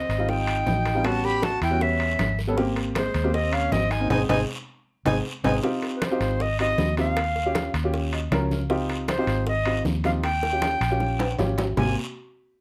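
A close, dry, detailed sound frames this sunny, danceable Afro-Cuban jazz excerpt in Ab major at 157 BPM, where a breathy, bright flute carries the melody up front over a round, punchy muted electric bass and a baby grand piano with audible action noise, a growling tenor saxophone adds a gritty second line until 5.5 seconds, and congas, hard-handed high bongos, metal-shelled timbales and a raspy guiro drive the groove, with a band accent and drum fill closing the first section before the second begins at 5.6 seconds.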